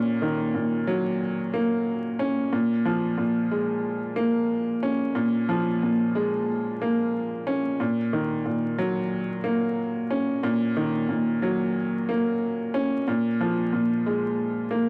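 Over a swung sixteenth-note lilt, this dark, gritty hip hop fragment features a solo upright piano, woody and intimate with audible action noise and short sustain, sitting up front through high-pass and low-pass filtering as it moves from Ebm7/Bb to Bbm7 and lands on Bb7(no3) at 13.1 seconds, all captured in a dry, gritty hardware recording with light studio reverb and vinyl crackle.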